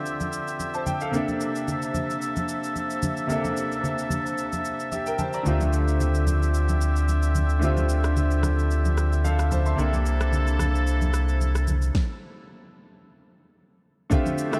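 A bright, brilliant grand piano with analog chorus and a warm, vibrato-laden woodwind section open this late-night, soulful amapiano excerpt at 111 BPM, drifting between Dm11 and C13 with a swung 16th-note feel, while a smooth, tape-warm electronic R&B kit of soft kick, fat snare, rim click and shaker joins alongside ringing, close congas in the background. At 5.5 seconds a deep, sine-and-triangle sub bass with an octave layer arrives up front, mellow and sustained, before dropping out at 11.9 seconds as the arrangement pauses into a stop. The whole dreamy mix is bathed in a cathedral-sized reverb.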